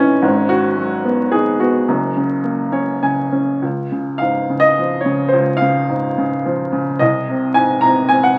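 Heard through the crackle of a very old 78 rpm record and a modest small-room reverb, this brief fragment of a longer classical piece features a lone upright piano, woody and smooth, with a vintage character and short sustain, sitting up front. At 107 BPM in a rubato 3/4, the lyrical playing feels sunny and hopeful, moving from G#m7 to F# in F# major. A piano fill at 2.4 s carries the music into Db major at 3.6 s, where it later settles on Ab/C.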